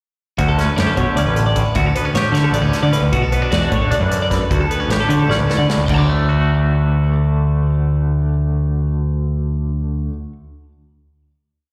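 Heard through a venue's PA with recital-hall reverb, this short, playful and intricate math rock and midwest emo piece in D major races along at 306 BPM in 7/8, where a clean twangy electric guitar plays syncopated fingerstyle accompaniment with tremolo and slapback echo, a bright twelve-string electric guitar spins a picked arpeggio ostinato with warbly pitch drift and tape echo, an up-front overdriven bass growls through a syncopated riff, and a punchy acoustic drum kit in a pumping room drives the odd-metre groove until a fill at 5.3 seconds leads to the drums dropping out at 6.0 seconds as the band rings out on a final D chord.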